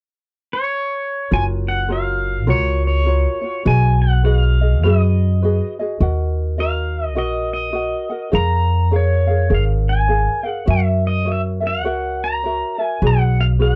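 Relaxed and dreamy, this Hawaiian excerpt swings gently at 102 BPM in F# major, with a bright, twangy electric pedal steel guitar playing the melody from 0.5 seconds, its fingerpicked slide lines clean, compressed and shaped by volume swells. At 1.3 seconds a light, thumb-plucked acoustic ukulele joins in accompaniment alongside a woody, thumpy pizzicato upright bass on gut strings, its dark tone sitting up front with the steel. The harmony moves through F#maj7, B6, D#m and C#6/E# to F#7 and Bm6, all captured in a dry, close 1970s-style studio sound.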